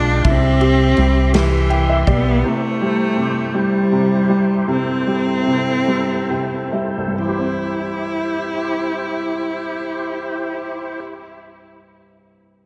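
A clear, focused bowed cello carries the melody with vibrato, its line trailing into a diffuse ambient delay, while a woody upright piano accompanies through to 12.7 seconds and adds fills, and a reedy tonewheel organ holds sustained chords with chorus vibrato, key click and a slow rotary speaker. This romantic, heartfelt six-eight pop ballad in C major moves at 44-56 BPM and slows down between 2.4 and 7.2 seconds. A dark, round hollow-body electric bass and an airy country drum kit with a punchy kick, ride cymbal and snare play only at the opening before 2.4 seconds, all set in a dreamy mix soaked in lush hall reverb.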